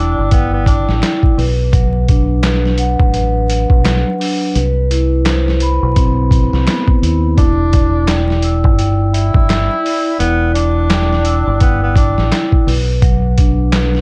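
Gritty and dark, this excerpt from a longer boom-bap hip-hop piece rides a swung sixteenth-note groove over a cycle of Em7, Bm and Cmaj7 chords. A vibraphone played with soft mallets, motor off, carries the accompaniment throughout, its metallic, ringing tone mellowed by a tape-worn, filtered character and set up front. A deep, round dub-style fingered electric bass sits close beneath it, while a compressed, pitched-down trip-hop drum kit arrives at 0.3 s with a thumpy kick, medium-tuned snare, hi-hat and handclaps that sound muffled and re-recorded in a small room. A breathy tenor saxophone, distant and whispered with subtone, vibrato and scooped notes, opens briefly in jazz style, then returns at 7.4 s for an intimate solo phrase that ends at 12.3 s, its filtered sound trailed by digital delay. Very quiet, vintage finger snaps sit in the background, and the dry, dark production is dusted with vinyl crackle.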